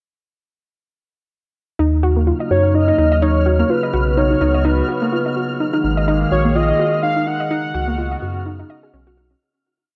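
A velvety, full-bodied synth lead carries a free-roaming melody with vibrato, chorus and delay through this melancholic, eerie IDM piece at 126 BPM in Eb minor, riding a lightly swung 16th-note groove that begins at 1.8 seconds. Beneath it, a round, deep sub bass glides through long notes up front, a dusty, detuned pluck loops a 12-step arpeggio sequence that drifts against the bar, and a nostalgic, tape-like pad holds wave-folded chords, while a grainy, flickering granular texture sustains a single high note. The harmony moves through Ebm7, Bsus2, Absus2 and Db7sus4 inside a lush hall reverb, and the piece fades out from 6.9 seconds.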